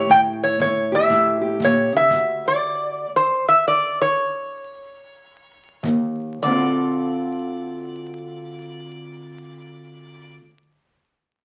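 Brooding and mournful, this short cut from a longer acoustic country blues piece sits in D minor at a swung 4/4 pace of roughly 100-119 BPM, heard through the crackle of a very old 78 rpm record. A metal-body resonator slide guitar carries the melody up front, its nasal, metallic voice played with fingerpicks and a slide in a range from C5 to G5. Beneath it, a fingerpicked steel-string parlour guitar supplies dark, boxy accompaniment reaching from D2 to A4. A punchy kick drum played with brushes sits in the background, heard briefly at the start and again around 5.8 seconds. The opening A7b9 harmony gives way to a stop from 2.1 to 5.8 seconds as the tempo slows, before the music settles onto Dm7 at 6.4 seconds, all carried in a moderate large studio reverb.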